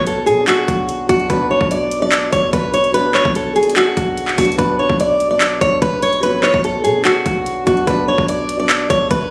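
Captured on a phone in the room with a light studio reverb, this menacing, hard-hitting trap cut moves at 146 BPM in a half-time feel, sitting on a B minor chord throughout. A bright, fingerpicked steel-string acoustic guitar carries the melody up front with a delay, while a dark, mellow concert grand piano with short sustain supplies accompaniment and a deep, boomy 808-style bass with a fast attack decays beneath. From 0.1 s an electronic trap kit of hard-clipped kick, bright hi-hats and handclaps punches through, overdriven and re-recorded in a small room.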